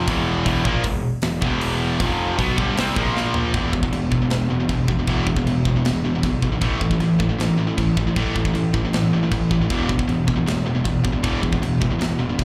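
Relentless and heavy, this heavy metal passage, cut from a longer piece, drives at 156 BPM in a straight 4/4, rooted in E phrygian and heard as a live gig through a club PA with light reverb. Three picked guitars stack the riff from the outset: a bright, up-front tight distorted guitar, a dark, sludgy overdriven guitar with slapback echo in the background, and a double-tracked overdriven guitar, also with slapback echo, that drops out at 3.5 seconds. Beneath them a fuzz-laden, growly picked electric bass, bright and overdriven, sits in the background. The acoustic kit arrives at 0.1 seconds, polished and airy with bright china and hi-hat cymbals, a medium-tuned snare, toms and a tight kick placed up front. The opening moves through E5, F5, Gadd11 and A#5 before a drum fill leads into the next section at 3.5 seconds, where the harmony shifts between E5 and A5.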